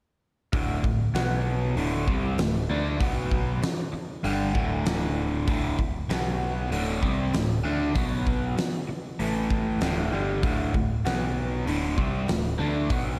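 A straight 4/4 groove at 97 BPM drives this sunny, confident classic rock excerpt in D major, where a bright distorted electric guitar and an up-front overdriven guitar colored by phaser share a riff over D5 and B5 power chords with a brief break at 8.6 seconds, while a growling picked bass with overdrive and a huge arena drum kit with a fat snare and punchy kick fill out a big arena sound in moderate concert hall reverb.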